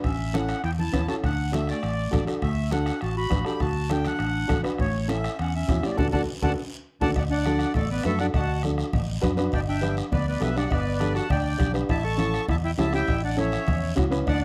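This excerpt opens with the whole ensemble at once in a joyful, festive cumbia, moving at a brisk 202 BPM in straight 4/4 in D major. A reedy, close-miked accordion carries the melody with a slapback echo, while a warm clarinet plays a second line in a jazz style, with vibrato, scooped notes and a smooth top. Beneath them, a dark, woody upright piano adds mellow accompaniment, sounding worn and slightly detuned, with audible action noise. A round, punchy fingered electric bass anchors the low end, and the percussion blends a soft-beatered bombo heard from a distance, very quiet ringing congas struck with hard hands, a raspy guiro, and faint metal-shell timbales and cowbell. The band hits an accent from 6.0 seconds with a drum fill at 6.6 seconds, and at 7.2 seconds a new section begins that moves through G before landing on A. The sound is a dry, close 1970s-style studio recording with little reverb.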